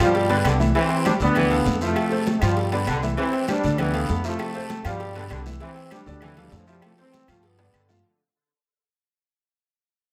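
Sunny and danceable, this salsa excerpt moves at a brisk 198 BPM in a straight 4/4, cycling through G7, Cadd9, Dm7 and Fmaj7 under a fade-out that runs its full length. An up-front, bright and punchy trombone section carries the melody, while a second trombone line sits in the background with light vibrato, a smooth top and a touch of tape echo. A clear concert grand piano with deep bass supplies the accompaniment, and a growly, woody upright bass, plucked pizzicato on steel strings, sits up front. The percussion bed blends high-tuned, damped congas, close and dry ringing agogo bells and timbales, a round, distant, very quiet cowbell, a raspy, saturated guiro and woody, very quiet claves. A moderate large-studio reverb frames the ensemble, and a drum fill closes the passage from 7.6 to 8.0 seconds.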